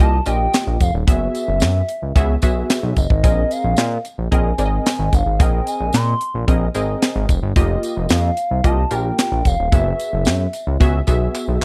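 A dry, up-front funk drum kit with a high-tuned snare, tight kick, hi-hat and handclaps drives this slick early-eighties boogie funk excerpt. Alongside it play a glossy, nasal chorused synth bass with pulse-width modulation and filter sweeps, a punchy, detuned sawtooth polysynth comp with plucky filtering over suspended ninth chords, a mellow gliding portamento lead with vibrato, chorus and slapback echo, and a jingly tambourine in the background, all in a close, nearly reverbless room before a drum fill at 11.3 seconds.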